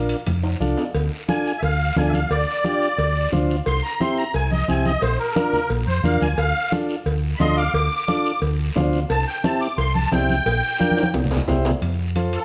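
Festive and joyful, this cumbia clip moves at a brisk 176 BPM in a straight 4/4, cut from a longer piece and sitting in a moderate large-studio reverb. A round, dark hollow-body electric bass sits up front from the start, alongside a vintage overdriven combo organ in the middle register, while raspy guiro, hard-handed low-tuned congas and ringing, saturated timbales with cowbell build the percussion bed. After a short drum fill, a shimmering musette accordion enters at 1.3 seconds and takes an airy, up-front solo in its reedy, wet-tuned voice, reaching into a high register. The harmony circles through Bb, D minor and C before a closing fill around 10.8 seconds leads to a landing on F at 11.8 seconds.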